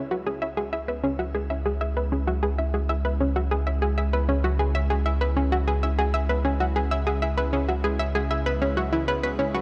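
Expansive and mysterious, this ambient passage is cut from a longer piece and moves in a straight 4/4 over a single C#m7 chord. A lush, thick unison pad of detuned sawtooth and square waves holds sustained chords in the background, fading in across the full 9.6 seconds with a slow attack, long release, chorus and shimmer reverb. Up front, a round analog pluck built from sawtooth and square waves with a sub octave plays a bright riff, its fast attack and short decay shaped by a filter sweep and carried by chorus, delay and shimmer reverb. Beneath them, a deep sine sub bass sustains a low note with a quick onset, also sitting up front. The mix has light reverb, and its highest frequencies stay below 10.4 kHz.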